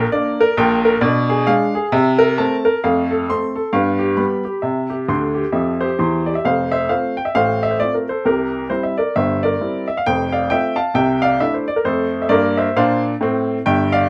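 Stride jazz with a swinging, playful mood: a lone upright piano with a woody, polished tone sits up front, spanning deep bass to bright upper notes. The harmony moves through diminished and sixth-chord colours before settling on F, and a brief piano fill from 5.1 to 6.4 seconds leads into a new section. Light reverb and close, detailed miking keep the sound intimate in this short passage cut from a longer piece.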